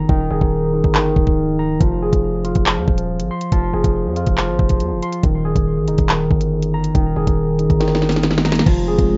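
A gritty, barky overdriven tine electric piano plays phased, tape-echoed arpeggios up front over a distorted, heavy 808-style bass and a knocking, sharp-snared drill drum kit with handclaps and crash in this menacing, ominous half-time drill cut from a longer piece at 140 BPM in F minor, moving between Ebsus4 and Fm, with a drum fill at 7.8 seconds before a detuned, chorused analog pad enters at 8.9 seconds, all in a rough home demo mix with a small, wet room sound.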